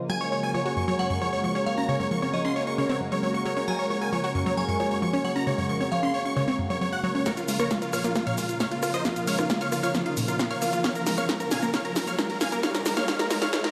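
Driving and emotional, this uplifting trance passage in Bb minor moves at 134 BPM in a straight 4/4, cut from a longer piece. A huge, euphoric supersaw lead carries the melody up front, bright and detuned with tape echo and sidechain pumping, over a lush, warbling pad of sustained chords and a round analog pluck spinning arpeggios through chorus and echo. A crystalline FM bell adds a second line in the background over a Gbadd9 colour until 6.3 s. At 7.3 s the harmony turns to Bbm and the build-up begins: a punchy, overdriven analog drum machine with snare, hi-hat, rim click and shaker drives a drum fill up front, a layered electronic kick sits behind it, and a lush, detuned unison pluck takes over the high second line. A riser and reverse cymbal enter at 10.1 s, all of it bathed in a vast ambient reverb with a stony, bare-room character.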